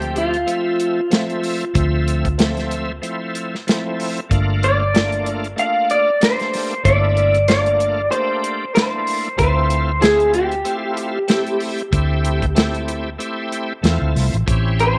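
A light studio reverb frames this mournful, smoky soul blues cut from a longer piece, set in a straight-eighth groove that moves from Dm9 to Gm9 and back before touching A7#9. Up front, an electric guitar through a small old amp carries the melody with a slightly broken-up, compressed, picked tone dressed in lush chorus, while a bright tonewheel organ fills in behind with a shouting, lightly overdriven voice, slow rotary speaker and chorus vibrato. A round, foam-muted vintage fingered bass and a dry, dark soul drum kit with tight kick, medium-tuned snare and hi-hat hold the low end throughout.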